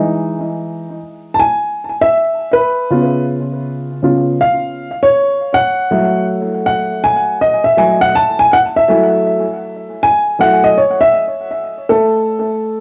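At 80 BPM in 4/4, with a 16th-note swing of 63%, this brief hip hop excerpt moves at an unhurried, head-nodding pace, cut from a longer piece. A single grand piano carries everything as a solo from 0.0 to 12.8 seconds, sitting up front with a dark, mellow, smooth tone, a vintage character and short sustain, ranging from C#3 to A5. The piano is colored by cassette tape and an analog delay, and the sound sits in a short, wet studio reverb, giving it the intimate feel of a home recording on cassette. Set in F# dorian and tuned slightly sharp at A4 = 441 Hz, the harmony moves from Emaj7 to C#7 at 2.9 seconds and settles on F#m7 at 5.9 seconds before the chords fall away at 11.9 seconds. The mood is cool and nocturnal, a late-night stretch of dusky piano color.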